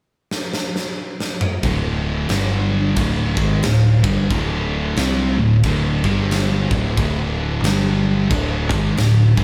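A slow, swung 4/4 pulse at 90 BPM drives this heavy, brooding stoner and doom metal passage, cut from a longer piece. A big acoustic rock kit sits up front, entering at 0.3 seconds with a drum fill across crash cymbal, toms, a punchy kick and a medium-tuned snare, all set in a stone-room sound. At 1.6 seconds the band arrives together: two dark, distorted fuzz guitars grind out the riff in the background, while a third, double-tracked and very quiet, adds a brighter fuzz layer to it. A picked electric bass with a direct, growly tone and tube saturation anchors the low end. The riff moves slowly between D5 and G5 power chords, and light reverb gives the feel of a band playing live in one room.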